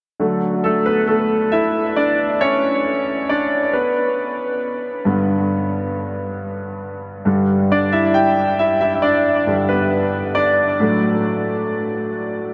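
Emotional and heartfelt, this slow pop passage in D major moves at 68 BPM in a straight 4/4, cut from a longer piece. A clear concert grand piano plays alone from 0.2 to 12.5 seconds, its polished, up-front tone reaching into a deep bass and touched by subtle chorus and tape echo, as the chords pass from Dadd9 through G and Em7/G to D/A. The whole mix is soaked in a huge ambient reverb with a 7.3-second decay, giving it a dreamy, floating sense of space.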